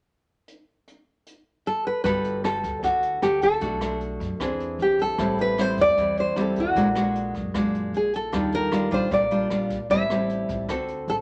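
Sophisticated and romantic, this bossa nova excerpt opens with a brushed jazz drum kit whose boomy kick, hi-hat and rim click sit quietly yet mid-forward, with a rolled-off top. From 1.7 s, a bright nylon-string guitar carries the fingerpicked melody, its fresh strings and finger squeak up front. At 2.0 s, a warm classical nylon-string guitar joins with fingerpicked accompaniment, along with a woody, dark, thumpy pizzicato upright bass on gut strings, all in a moderate studio reverb as the harmony moves through rich chords such as Gmaj9, Bbaug7 and Ebmaj9.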